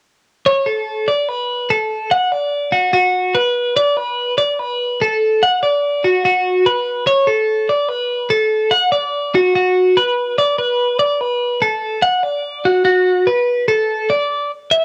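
A twelve-string electric guitar plays alone in this short rock excerpt, its clean, twangy picked tone compressed, placed up front and colored by cassette tape. The mood is bright and intricate over a straight 4/4 feel, and the part moves into a new section at 13.7 seconds before the cut at 14.8 seconds. Light reverb surrounds the guitar in a homespun recording made on cassette.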